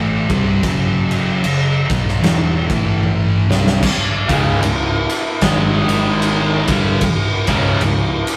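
An oversized low-tuned drum kit sits up front in this brooding, ominous stoner and doom metal excerpt, its punchy kick, dark cymbals and gritty, saturated crash, ride, snare and toms filling a big room at a slow, swung 75 BPM in 4/4, with a fill from 3.0 to 3.8 seconds. Two thick fuzz guitars grind out picked riffs in the background, one dropping away at 3.8 seconds as a bright, double-tracked distorted guitar enters up front at 4.3 seconds. Beneath them, a round, dark hollow-body short-scale bass adds overdriven weight, all captured as a rough rehearsal-room recording with light reverb and a tuning of A4 = 438 Hz.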